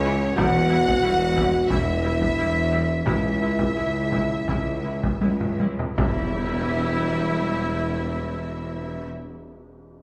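A wet hall reverb wraps this dark, epic orchestral film-score excerpt in E dorian at 78-92 BPM, where a distant, intense violin section carries the melody over a close, focused second violin line and a pure, crisp-attacked flute, with rich viola accompaniment, mellow French horn chords, and cello, double bass and tuba anchoring the bass, while a vintage, band-limited taiko ensemble on hard sticks drives from 0.4 s, slowing toward a drum fill and a band accent at 6.0 s, where a very quiet tam-tam and a huge, bright impact arrive over a return from C#m to Em.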